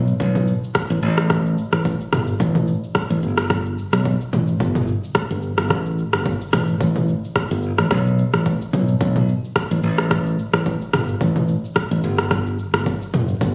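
Mellow and smooth, this afrobeats groove moves at 109 BPM in 4/4 with a light swing on the sixteenths, and it is cut from a longer piece. A bright, direct fingered electric bass opens the recording at 0.0 seconds, sitting up front and punchy in its low register between F#1 and B1. A deep house drum kit joins at 0.1 seconds, its electronic, layered sound built from a punchy kick, rim click, shaker and toms, also placed up front. Both parts carry through to the close at 13.5 seconds, forming a single continuous section. The sound has the character of a phone recording made in the room, with a touch of studio reverb, yet the overall space stays fairly dry.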